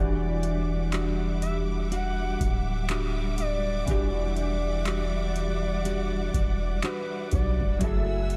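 A deep, long 808-style bass sits up front in this short, moody contemporary R&B excerpt, its mellow sine tone decaying beneath a booming, tape-warm analog drum machine that enters at 0.4 seconds with handclaps, metallic hi-hats and a deep kick in a slow, swung groove. Over a concert grand piano with audible action noise, fingerpicked nylon-string guitar arpeggios with finger squeak, and lush, distant bowed strings, a smooth gliding lead with triangle-like softness carries the melody through chorus, phaser and delay. The longing harmony rests on Em9 before shifting to F#m9 at 7.8 seconds, all set in a light, small-room reverb.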